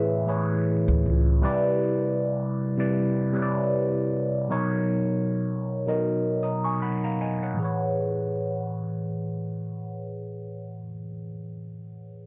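An overdriven tine electric piano anchors this smooth, soulful R&B excerpt, its barky, gritty tone pushed through a combo amp and sitting up front with a phaser coloring the sound. It carries the accompaniment throughout, ranging from A2 to D#6 over a relaxed 78 BPM in 4/4 with a light swing on the sixteenths. An upright bass appears only briefly, from 0.9 to 1.4 seconds, offering woody, thumpy pizzicato playing that spans C#2 to D2. The harmony moves through lush major-ninth chords, from Amaj9 to Cmaj9 at 1.4 seconds and Bmaj9 later, returning to Amaj9 as the second section begins at 7.6 seconds. The recording has a dry, close 1970s studio character with a small room ambience, and it is cut from a longer piece.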